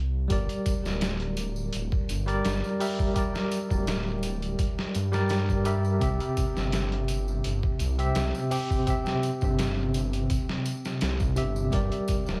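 A bell-like tine electric piano with tremolo and tape echo opens alongside a dark, rumbling detuned saw bass, and at 0.3 seconds a muffled, pitched-down sampler-style drum kit with a thumpy kick enters together with a tambourine tucked into the background, carrying this brooding, melancholic trip hop excerpt in G dorian at 84 BPM through a move from Gm to C and back to Gm, all wrapped in an echo-heavy mix with light reverb and vinyl crackle.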